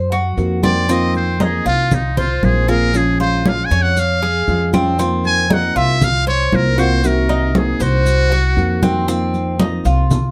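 A danceable, sultry stretch of Cuban son and guajira, cut from a longer piece, moves in a straight four-count feel through a dusky progression from Cm7b5 through F7sus4 and Bbm7. Up front, a trumpet with a metal mute carries the melody as a jazz-style solo, its buzzy, thin tone brilliant yet smooth on top, with a soft attack and light vibrato; it enters at 0.6 seconds and drops out at 9.1 seconds. A Cuban tres weaves picked arpeggios with a metallic ring from its double strings, while a dark, fingerpicked nylon-string guitar adds classical-style accompaniment, complete with finger squeak. The upright bass sits forward with a woody, thumpy pizzicato sound. Underneath, congas played with soft hands give a thick-skinned, damped, compressed and saturated pulse, and grainy, mellow maracas stay in the background, all held together by a moderate small-room reverb.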